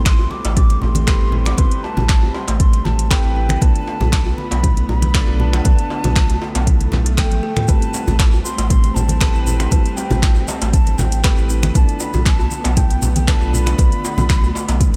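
A small, lightly reverberant room holds this driving afro house excerpt, where a deep, up-front electronic kick and a round sine sub bass anchor a produced afro-pop kit of metallic hats, snaps, handclaps and toms, with hard-handed congas in the background and a tight, cracking djembe with metal rattles. A breathy, mellow concert flute carries the expressive melody through analog delay, over sul tasto chamber strings, a buzzing, woody kalimba in arpeggios and soft, felt-muted upright piano stabs, all three pumping against the kick. A very quiet electronic swell and a drum fill arrive near 7 seconds, after which a grainy, close tube shaker joins at 7.7 seconds as the chords alternate between Am7 and Bm7b5.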